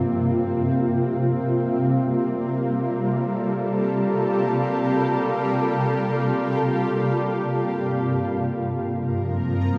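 Ambient music in free time and G minor, this short cut from a longer piece feels spacious and serene. A shimmering pad sits up front for the full 9.8 seconds, holding sustained chords from G2 to Bb4 with a slow attack, long release and an octave-up shimmer over detuned, granular sine tones thickened by chorus. Its dark, ethereal colour rests on a Gm11 chord before shifting to Fsus4/G at 7.6 seconds. A soft, pure FM bell plays gentle arpeggios only in the opening 1.5 seconds, barely audible beneath the pad, its decaying notes touched with chorus and phaser. A 2.4-second plate reverb soaks the whole mix in a dreamy haze.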